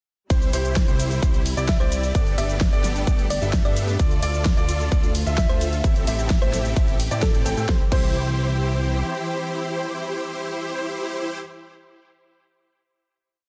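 A euphoric, triumphant festival progressive house piece in C major at 130 BPM bursts straight into its drop, with an overdriven, punchy four-on-the-floor kick up front, a big-room kit with a huge snare, hats, shaker, ride and crash, a fat, detuned analog bass following the chord rhythm, and huge, bright supersaw chords in dotted rhythms, all pumping against the kick. Beneath them a warm grand piano doubles the supersaws in arpeggios with delay, a distant bowed string section holds soft, expressive sustained chords, and from 1.7 seconds a round, tine-like FM pluck adds a gentle chorused melody in the background. The drums fall away after 8 seconds and the bass soon after, leaving the supersaws, piano and strings to ring out on a final C chord in a dense, heavily limited, dry mix with some lossy artefacts.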